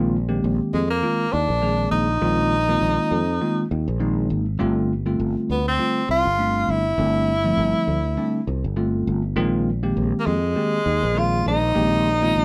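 A swung sixteenth-note feel drives this electric jazz fusion cut at 101 BPM in 4/4, and the mood is radiant and soaring. A bell-like tine electric piano plays clean accompaniment through its built-in speakers, moving from Bb9sus4 to G9sus4 and back to Bb9sus4 at 9.4 seconds. Beneath it, a fretless electric bass sits up front with a round, direct tone. The tenor saxophone enters at 0.7 seconds and takes the jazz-style solo, its gleaming sound marked by vibrato and scooped notes, standing slightly above the rest of the band. The players sound as if they are performing live together in one room, with light reverb around them, in this short section cut from a longer piece.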